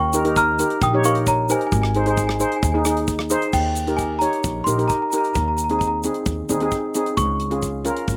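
A straight 4/4 calypso groove at 132 BPM in Ab major, driven by the punchy kick, hi-hat, rim click and bright crash cymbal of a modern studio drum kit and a grainy, close egg shaker, carries this carefree, festive fragment of a longer piece, where a bell-like, sweet small celesta plays the melody and takes a solo from 3.5 s over mellow, shimmering cello steel pan chords with slapback echo and a woody, growly pizzicato upright bass, in a dry, open-air sound.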